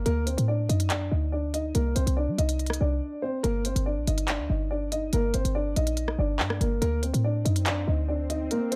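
A dark, mellow concert grand piano carries the ominous melody in this half-time drill excerpt, its boxy, deep-bassed tone sitting up front beside a punchy, tight 808-style bass with a sine body, a noise layer, a fast attack and a decaying tail. An electronic drill kit of crisp hats, handclaps and rim clicks adds a tape-warm edge, with a brief break at 3.0 seconds, while the chords move between D, Cm and Gm in a dry, menacing space. An electronic swell rises in the background from 7.6 seconds, and the bass drops away at 8.5 seconds as the piece cuts off.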